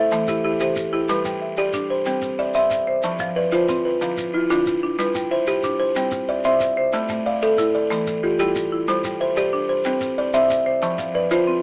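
Heard through a narrow, telephone-like filter in a moderate studio reverb, this hypnotic, warm fragment of southern African traditional music turns an mbira-style interlocking cycle in G mixolydian at 123 BPM in 12/8, with an up-front, ringing, thumbnail-plucked buzzing kalimba spinning arpeggios over a bright, dry, percussive buzzing marimba struck with medium hard mallets, while a grainy, close shekere sits softly beneath as the chords move from Em through G, C and F to Dm and onward.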